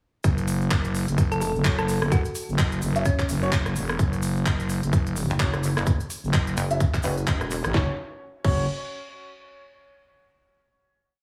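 A bouncy, gritty bass house drop at 128 BPM in F# minor opens on a tight, up-front four-on-the-floor kick, an overdriven, growling FM bass with sidechain pumping, and a tape-warm garage kit of cracking snare, handclaps, crisp hi-hats, rim clicks and crash over swung sixteenths, with a very quiet grainy shaker beneath, before a round, tine-like synth pluck with chorus and dub echo enters at 1.3 s, followed by sparse, boxy chord stabs from a dark grand piano carrying dub echo and sidechain pumping, then a heavy, saturated wobble bass with chorus and pumping joins at 5.3 s, all in light reverb until the final chord at 7.7 s.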